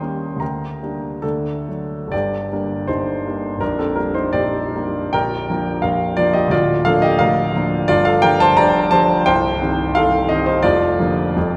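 A romantic classical character piece for solo piano, this short passage cut from a longer work carries a bittersweet, passionate mood. It unfolds in a supple two-beat metre with rubato that lets the pulse ease and press forward. The grand piano plays throughout, ranging from deep bass notes up into the upper treble, and its tone is clear, polished and intimate, sitting up front with the clicks of its action audible. Around it hangs a long cathedral reverb, giving the sound the spacious ring of a church or concert hall. After a brief opening statement, a second section begins at 2.1 seconds, and the harmony drifts toward a brighter major colour from 7.9 seconds, reaching a B-flat chord over F as the passage breaks off at 11.6 seconds.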